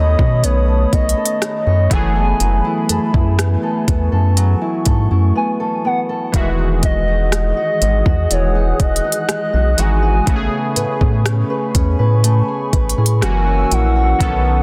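A chorus-tinged, gliding portamento lead with delay sings mellow lines over warbling vintage analog keys, a hollow, flute-like pad, a boxy fingerpicked ladder-braced acoustic guitar and a rubbery, bouncy square bass, with a smooth electronic R&B kit of soft kick, hi-hat and rim click entering at 0.2 seconds, in this tender contemporary R&B excerpt at 61 BPM in E major that features a brief break from 5.4 to 6.3 seconds before moving through Emaj9 and Amaj9 within digital ambience and a dense, heavily limited modern master.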